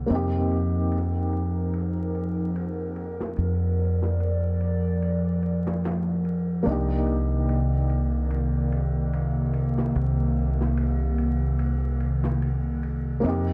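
Dark and melancholic, this trip hop excerpt in C minor drifts at 73 BPM with a light swing, as a woody, slightly detuned upright piano with audible action noise, tremolo and tape echo plays over a warbling, nostalgic pad carrying sustained chords, while a round, punchy fingered electric bass with tube saturation sits up front and a quiet, swinging big-band drum kit, its hi-hat, ride and snare softened by low-pass filtering, enters at 0.1 seconds, all wrapped in small-room ambience and vinyl crackle as the harmony moves from F7sus4 to Cm7 at 6.7 seconds.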